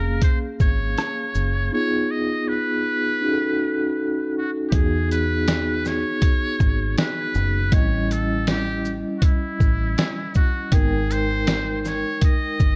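Smoky and nocturnal, this jazz-hop cut from a longer hip hop piece sets a buzzy, metal-muted trumpet melody, with scooped notes, vibrato and slapback echo, over mellow, ringing soft-mallet vibraphone and a round, punchy, deep dub fingered electric bass. A compressed, muffled sampler-style drum kit, with a thumpy kick, snare, rim click, shaker and hi-hat, enters at 0.2 seconds, drops out from 1.7 to 4.7 seconds, then returns up front with a swung sixteenth-note feel as the harmony moves through chords such as Gbmaj9 and A7#11. The dark production sits in light reverb and digital ambience.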